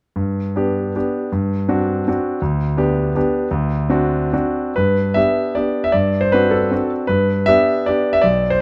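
A clear, smooth concert grand piano with a deep bass and a vintage character sits up front in this graceful, rustic romantic dance in triple time, played solo in G major from 0.2 to 8.6 seconds with dotted rhythms and supple rubato at roughly 125-175 BPM, captured close and detailed in light reverb as a short cut from a longer piece.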